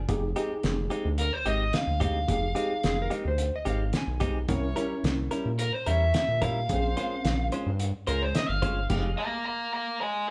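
A band playing live in one room, wrapped in a moderate large-studio reverb, gives this brief cut from a longer piece of smoky, soulful straight-eighth soul blues its roomy character. A round, deep analog bass and a cloth-damped, thuddy drum kit with a fat snare and muffled cymbals sit up front beside a worn, slightly out-of-tune tine electric piano with light overdrive, while a bright, twangy clean guitar recorded direct adds stabs. A dark lead guitar pushed through a small cranked amp carries the melody from 1.2 s, an electric slide guitar plays a brief second line from 2.9 s, and a clear horn section holds sustained chords in the background from 4.5 s over Fm9, C7b9 and Bbm9.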